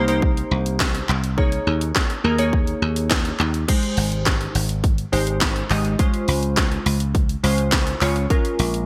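A straight 4/4 groove from a layered electronic house drum kit drives this upbeat, summery dance-pop excerpt, with a punchy kick, cracking snare, warm hi-hats, handclaps and crash cymbal sitting up front in gated reverb. Beneath it, a dry, thumbed slap bass, foam-muted and direct, holds the low end and pumps with sidechain compression. Glassy digital keys with a sine-like tone, fast attack and decaying notes carry the chords, thickened by chorus, shaped by a filter sweep and also sidechain-pumped. The harmony moves through Cm7 and Eb7sus4 before a second section at 3.7 s turns to Abmaj7, Dbmaj7 and Bbm7. Light reverb and a bright 1980s-style digital production give the piece its sheen.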